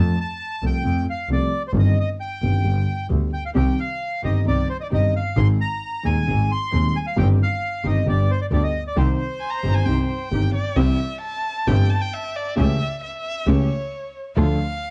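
Heard through cassette tape in a small, moderately reverberant room, this cut from a longer tango moves at 133 BPM with a rubato feel, melancholic and sultry in C minor before turning to C major at 10.8 seconds. A reedy bandoneon carries the melody over dark, mellow piano with deep bass and a biting, bowed double bass, while a muted string section adds veiled, lush stabs in the background from 3.5 seconds. A violin with vibrato and portamento enters at 9.4 seconds on a tape-echoed second line, then takes an expressive solo once the bandoneon has finished.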